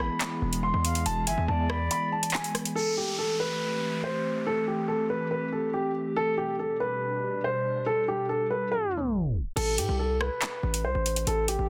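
A dense, heavily limited mix with light digital ambience carries this ominous, cold half-time drill cut at 141 BPM in A minor, where a dark, mellow baby grand piano with long sustain and digital delay leads up front over a warbling, tape-like pad with phaser. A heavy, saturated 808-style bass drops out at 1.9 seconds, and a distant, pure silver flute with its own delay ends at 2.3 seconds. Airy lo-fi synth keys and a drill kit with metallic hats and clipped snare then fall away at 2.8 seconds for an electronic downlifter and a tape stop before the bass and drums return at 9.6 seconds.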